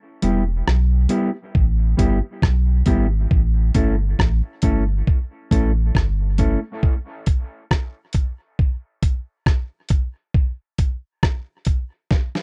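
A slow 4/4 groove at 68 BPM with a 16th-note swing of 56% drives this deep, heavy dub reggae piece, cut from a longer recording. A dusty, sampler-style drum kit sits up front, with a thumpy kick, a medium-tuned snare, rim clicks and hi-hat, all compressed and gritty. From 0.2 seconds a round sine sub bass holds sustained low notes with a fast attack, while a dark, clean electric guitar plays fingered accompaniment through a dub echo, both moving over Em and then A. At 6.6 seconds the bass and guitar stop, leaving the drums alone until a short drum fill at 12.1 seconds closes the passage. The sound is dry and close, like a 1970s studio session.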